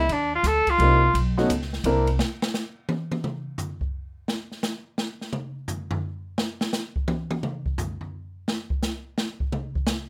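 A clear tenor saxophone with vibrato opens this playful, relaxed small-group swing-and-bop jazz in 3/4 at 172 BPM, over woody pizzicato upright bass and an airy drum kit, with a warm upright piano adding brief accompaniment. The saxophone's short solo gives way at 2.2 seconds to a drum solo on hi-hat, ride, snare, toms and a boomy kick, with dark cymbals ringing in a small room until 10.0 seconds. Light reverb rounds out the up-front sound of this fragment cut from a longer piece.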